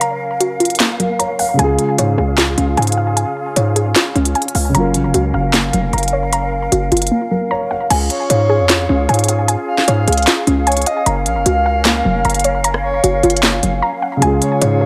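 Dreamy yet triumphant, this half-time trap excerpt sets a dark, mellow concert grand piano and an airy, vibrato-laced flute ensemble holding sustained chords beside soft, round pluck arpeggios treated with chorus and digital delay, while a crisp trap kit with sharp snare, handclaps, rim clicks and crash sits up front. A punchy, heavy 808-style bass arrives at 1.6 seconds, the piano drops out after the first half, and a breathy, warbling flute-like synth lead with a vintage tint enters at 8.1 seconds to carry a second line. The piano returns briefly near the close over a Db chord, all under light reverb.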